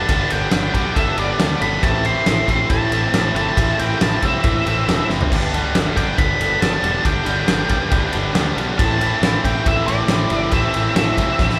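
Driving and confident, this classic rock excerpt moves at 138 BPM in a straight 4/4, alternating between G and A minor as a band plays live together in a large studio room with moderate reverb. A dark, picked octave-fuzz lead guitar carries the melody high over a bright, double-tracked overdriven rhythm guitar riff, while a growling fingered bass adds its own overdriven bite down low. The big acoustic drum kit sits up front with a punchy kick, fat snare and rolled-off cymbals, throwing in fills at 5.1 and 11.4 seconds.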